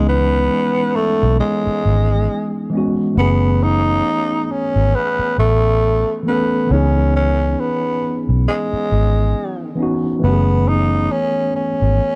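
Lo-fi hip hop at a slow 68 BPM with a swung 16th feel in C# minor, this melancholic, hazy excerpt sets a growling, breathy tenor saxophone melody with raspy subtone and scooped notes over a mellow tine electric piano carrying a cassette-tape coloring and a round, foam-muted electric bass sitting up front, all moving between C#m9 and F#m11 in a dark small-room production, with the saxophone's analog delay adding a smoky trail.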